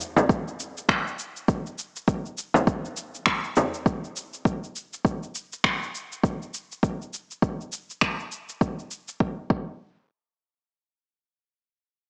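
A deep, overdriven electronic kick drum anchors this hypnotic, mystical downtempo excerpt, set on swung sixteenths in 4/4 beside layered electronic shaker and finger snaps that share its distortion and the echo of a large room. A close, dry acoustic frame drum sits up front until 3.7 s, while the shaker and snaps drop out at 9.2 s and the kick carries on briefly into the closing passage. Light digital reverb and a gritty cassette, small-speaker sound lend the recording a lo-fi, hardware-rough character.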